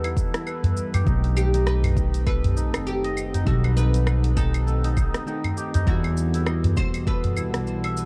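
Meditative and hypnotic, this short organic downtempo excerpt in E harmonic minor moves at 100 BPM with a 16th-note swing, built on a woody, thumpy upright bass up front, a deep electronic kick, a small udu and an afro-pop kit of cabasa, claves, dark hats and rim click. A shimmering hammered santur plays arpeggios through tape echo while a mellow electric guitar and a warbling, lo-fi tape-like pad with chorus and reverb sit in the background, both with sidechain pumping. From 1.4 seconds a bright, plectrum-plucked fretless oud carries the melody with tape echo over Emadd9 and B7b9b13 chords, all within a dark, small-room production.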